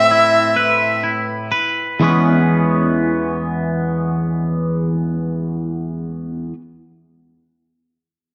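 Bathed in a wet scoring-stage reverb, this hopeful, soaring rock passage in E major moves at a slow 40-45 BPM in 6/8 and slows at the start, as a nasal, vibrato-rich bowed violin sings an up-front E5 melody with slapback echo until 1.0 s, while a bright, clean, twangy electric guitar picks compressed arpeggios from E2 to B4 through phaser and slapback echo, shifting from Amadd9 to E6 at 2.0 s and ringing on to 6.5 s.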